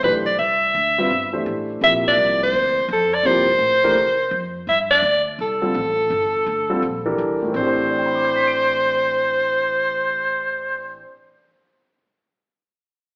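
Soprano saxophone, concert grand piano and pizzicato upright bass start together in this cool, intense modal jazz excerpt in A minor, swinging at 168 BPM in 4/4 as chords move from Am11 to Gm11 and back to Am11 at 7.5 seconds. Close-miked and up front, the soprano sax solos with vibrato, subtone and scooped notes, while the deep-bassed piano accompanies and the growly, thumpy bass of steel strings sits low beneath them. The band plays live in one stone room with a reverb tail and an AM radio sound, the saxophone and bass stopping at 11.0 seconds and the piano continuing to 11.9 seconds.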